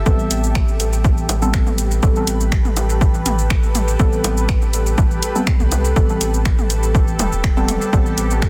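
A straight 4/4 dub techno groove at 122 BPM opens this hazy, meditative excerpt from a longer piece, driven by a punchy, overdriven electronic kick that sits at the front of the mix. Around it, a layered deep house kit of cabasa, finger snaps and hi-hat carries its own overdrive and dub echo, while overdriven electronic bongos and toms join in the background from 0.6 s. A round, soft sub bass with a fast attack pumps beneath everything, and deep, nasal chord stabs, treated with chorus, phaser and dub echo, pluck and decay through a dark Am9 from 0.1 s. High above, a granular cloud pad holds blurred, evolving sustained chords, bathed in its own reverb and breathing with sidechain pumping. The dense, heavily limited modern master and digital ambience give the whole passage a thick, immersive haze.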